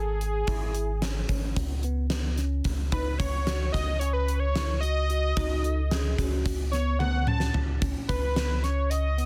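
A bold, retro octave-doubled lead carries the melody across this brief cut from a longer progressive instrumental, its bright, detuned sawtooth-and-triangle tone warbling with vibrato, chorus and digital delay as it takes a synth solo up to about 7.8 seconds. The music is driving and brooding, moving in 9/8 at 221 eighth-note beats per minute with a straight feel in C# minor, shifting from C#m7 to F#5/C# and then to a C#7 chord with its third omitted as a short second section begins. Underneath, a thick, saturated sub bass sits up front with a deep, sustained weight, while a clean tine electric piano plays arpeggios through a phaser in the background. A gated 80s drum kit enters at 0.2 seconds with a punchy kick, fat snare, hi-hat and toms in a bright stone room, and drives a fill just before the section change. Briefly, from 5.4 to 6.6 seconds, a vibraphone struck with hard mallets adds a metallic, ringing second line from a boxy small room. 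The mix is dry and heavily limited, with a dense, modern finish.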